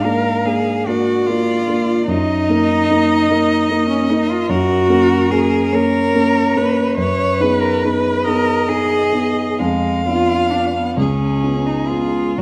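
Solemn and melancholic, this slow, rubato classical passage for piano trio in 6/8, cut from a longer piece, moves from Eb minor to F# major at 4.5 seconds as a smooth, vibrato-laden violin carries the melody, an up-front cello sings a second line with expressive portamento, and a dark, mellow concert grand with deep bass and long sustain provides the accompaniment, all set in a moderate scoring-stage reverb.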